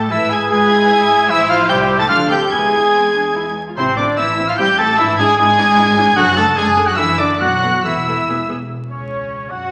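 A focused, bowed violin section carries the melody through this stormy, restless excerpt of a quick classical-period symphonic movement in 3/4 at 135-153 BPM with a rubato feel, over a very quiet second violin line, a clear oboe, an airy metal flute, a soft, distant clarinet that drops out at 8.5 s, trumpet stabs in the background, very quiet mellow sustained horn chords, lush viola accompaniment, and cellos and double basses on the bass, all shifting between Am, Dm and E harmonies before closing on C#sus4 in a wet recital-hall reverb beneath a layer of vinyl crackle.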